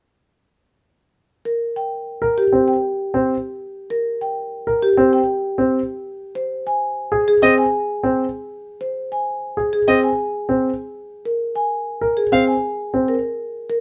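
A soft-mallet marimba opens this fragment of a longer classical piece at 1.5 s, carrying the melody in a round, mellow tone that sits up front. At 2.2 s a dark grand piano joins with arpeggios, its worn, intimate sound marked by audible action noise. The music moves at 98 BPM in a straight 4/4, with the minimalist pattern writing building an urgent, hypnotic mood. A single bowed violin enters at 7.4 s with its own arpeggios, its shadowy, expressive voice shaped by vibrato and portamento, until it drops out at 12.4 s. A light reverb gives the up-front parts a touch of space, and the harmony moves from a C5 chord through a stretch that leaves the harmony open, arriving at Bb5.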